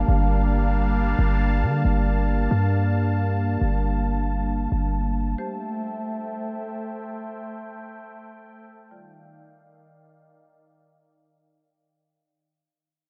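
Low-pass filtered and lightly roomy, this melancholic, ethereal hip hop fragment in free time fades out across its full 12.4 seconds, as an evolving, detuned sawtooth pad with chorus sustains chords up front from Gm9 through Am7 to Ebmaj9, a deep, boomy 808-style bass sits beneath until 5.4 seconds, and a woody marimba with medium hard mallets adds faint texture in the background.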